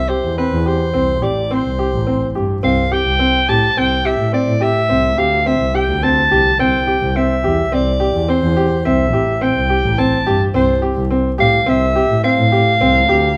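Heard through close, detailed microphones in a moderate concert hall reverb, this playful, shimmering excerpt of contemporary chamber music moves in 7/4 at 106 BPM in C major, where a clear, punchy soprano saxophone sings a jazz-style solo melody with scooped notes and light vibrato, a smooth, bowed double bass holds the low end with even vibrato, and an intimate, somewhat boxy grand piano plays arpeggios with audible action noise over chords drifting from C through C69 to Fadd9/C by 10.5 seconds.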